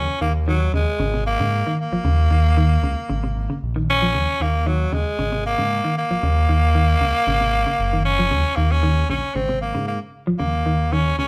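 Cut from a longer piece, this afrobeat passage is captured as a band playing live in one room, wrapped in the wet reverb of a stone space. A raspy, growling tenor saxophone takes the solo melody up front with light vibrato, while a clean, picked electric guitar spins arpeggios and a smooth, gliding synth bass with a mellow sawtooth-and-triangle tone and a moving notch holds down the low end. The mood is funky and driving, with the harmony rocking between Ebm7, Eb5 and Ab-based chords such as Abadd9 and Ab9 throughout its 11.3 seconds.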